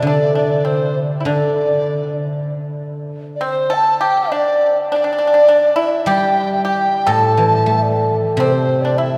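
A large dizi with a hollow, buzzing-membrane tone carries the melody in this pastoral, festive excerpt of Chinese traditional chamber music in D shang mode, set in a rubato 4/4 around 95-105 BPM, as a very quiet, breathy xiao with vibrato and a bright, percussive, fingerpicked pipa add second lines over a silvery, ringing guzheng accompaniment placed up front, all bathed in a cathedral-like reverb from a church or concert hall, with a new section beginning at 2.5 seconds.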